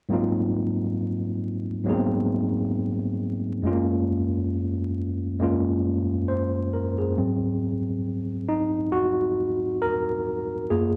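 This hip hop fragment, cut from a longer piece, drifts at 68 BPM in 4/4 with a 16th-note swing that gives it a lazy, nostalgic, hazy feel. A tine electric piano carries the whole thing, playing lush chords from Ab13 to Gbmaj9 across a span from Gb2 to C5. Its tone is worn and slightly out of tune, lightly overdriven and softened by a low-pass filter, as if heard through built-in speakers, yet it sits up front in the mix. At 7.2 seconds the music moves into a new section, where the piano takes a solo over an Ab9 chord until the fragment ends at 11.0 seconds. The dry, gritty recording is touched with light reverb and a bed of vinyl crackle, adding to the dusty, faded atmosphere.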